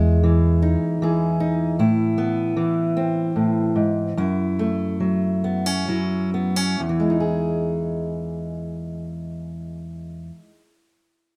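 A woody, thumpy pizzicato note from the upright bass sounds alongside an up-front, warm fingerpicked steel-string acoustic guitar at the start, but the bass stops by 0.7 seconds, leaving the guitar to carry this intimate, hopeful folk fragment in 3/4 and E major through Emaj7, Amadd9 and F#m7, with the tempo around 64-77 BPM easing down between 1.8 and 6.8 seconds before returning to Emaj7, all in light reverb.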